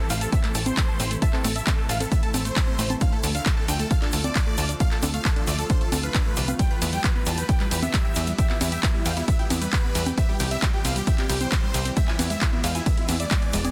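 Emotional and bittersweet, this uplifting trance excerpt at 134 BPM in straight 4/4 moves through Am, Dm, Em, C and E, led by a huge, euphoric detuned supersaw with phaser and digital delay, while a brilliant concert grand piano carries a second line and a lush unison pluck with a moving notch spins arpeggios in the background. Underneath, a tight, nasal sequencer bass drives the low end from E1 to E2, and a punchy electronic kick sits up front beside a tape-warm analog drum machine playing congas, handclaps, hi-hat and ride, re-recorded in a large room, with a grainy egg shaker tucked behind. The bass, lead, piano and pluck all pump against the sidechain, and the dense, heavily limited master carries little reverb.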